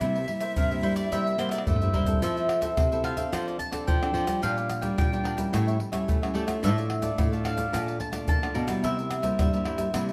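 Samba and choro at a lively, playful 109 BPM in F major, this excerpt opens with a breathy, vibrato-laden flute phrase that ends at 1.7 seconds over crisp picked cavaquinho, a fingerpicked classical nylon-string guitar and a second nylon-string guitar on bass with audible finger squeak, all driven by a tight, up-front surdo, pandeiro, tamborim and egg shaker played with hard hands, before a round, double-strung mandolin that entered at 0.6 seconds takes a solo from 2.2 seconds following a drum fill, all set in a moderately large studio reverb.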